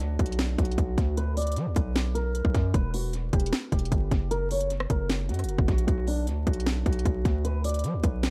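Opening at once on an up-front trap kit of crisp hi-hats, hard-clipped kick, rim clicks and sharp snare wrapped in tape echo, alongside a punchy, heavy 808-style bass with a fast attack and decaying sine-and-noise tone, this menacing, brooding half-time trap excerpt at 153 BPM in B harmonic minor moves through Bm, Em and F# as a fingerpicked steel-string acoustic guitar enters at 0.2 seconds with a warm, low-pass-filtered, tape-echoed melody, all set in an echo-heavy digital ambience laced with vinyl crackle.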